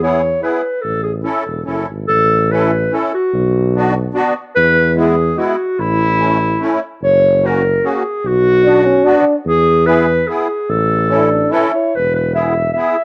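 A mellow, distant clarinet carries the melody with a cassette-tape tint in this bouncy, jolly alpine dance-band number in A major at 146 BPM, with a rubato 3/4 feel, over a reedy, shimmering musette accordion, a tuba bass with light vibrato and, from 8.6 to 11.9 seconds, a clear, punchy euphonium second line, all in a lightly reverberant small room on a home cassette recording cut from a longer piece.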